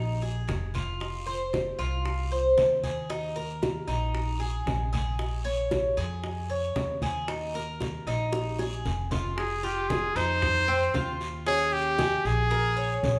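Bright, metallic Cuban tres arpeggios open this sultry Cuban son and guajira excerpt at 115 BPM in F minor, over woody, thumpy upright bass, with low-tuned, hard-hand bongos and thick-skinned congas joining at 0.2 seconds, a raspy, saturated guiro at 0.5 seconds, and after a drum fill a clear, up-front trumpet solo with vibrato entering at 9.4 seconds, the live band sitting in a wet, large studio reverb.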